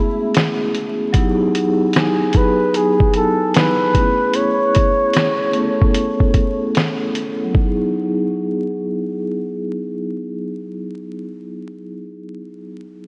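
Lo-fi hip hop with a reflective, melancholic air, in which a breathy, whispered flugelhorn carries an intimate jazz-style melody until 6.8 seconds over mellow, close-miked vibraphone with soft mallets and slow motor vibrato, while a muffled sampler-style kit with a thumpy kick, fat snare and 12-bit grit sits up front in a swung sixteenth feel until 7.8 seconds, leaving the ringing vibraphone alone to 13.1 seconds, the dreamy mix soaked in lush hall reverb and vinyl crackle with a filter sweep across the opening.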